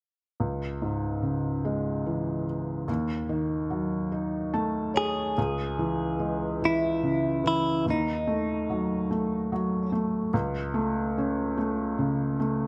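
Melancholic and dramatic, this slow 6/8 pop excerpt in C# minor at 48 BPM sets a felt-muted upright piano, mellow and intimate with audible action noise, under a bright, twangy clean electric guitar melody with phaser that enters at 5.0 seconds, both up front in a moderate echo-chamber reverb as the chords move from C#m through D#dim to A/C#.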